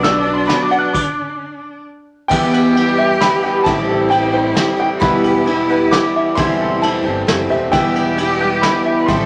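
In a straight three-beat lilt, this stirring, bittersweet indie folk excerpt builds through a brief stop between 0.9 and 2.3 seconds into its second section. A worn, woody, slightly detuned upright piano carries the high melody while a bowed cello with nasal vibrato sings a second line, backed by a brilliant concert grand, a shimmering octave-doubled twelve-string guitar with finger squeak, plunky fingerpicked banjo arpeggios, a very quiet, distant brass section holding chords, and an amped fingered electric bass. A vintage kit played with brushes, with dark cymbals and a tight kick, sits in a pumping studio room, and a wet reverb is heard in the mix.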